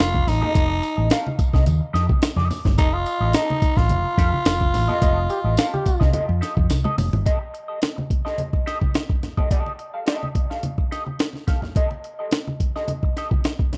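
A strutting funk groove in F mixolydian at 107 BPM opens with a growling, raspy tenor saxophone melody with tape echo over a gritty, compressed breakbeat-style drum kit with a thumpy kick and high-tuned snare set up front, while a dark, round hollow-body bass played with the fingers anchors the F9 chord. A clean semi-hollow electric guitar with wah and spring reverb adds accompaniment between G4 and F5, and jingly tambourine and low-tuned congas with thick skins sit in the background. A vibrato-laden trombone slips in briefly as a second line around 5.3 seconds during a band accent, and a drum fill at 6.7 seconds closes the first section as the saxophone, bass and tambourine drop away. From 7.3 seconds the guitar, drums and congas carry on over a rootless F9 until the cut-off at 13.8 seconds. The sound is dry and close, in the manner of a 1970s studio recording.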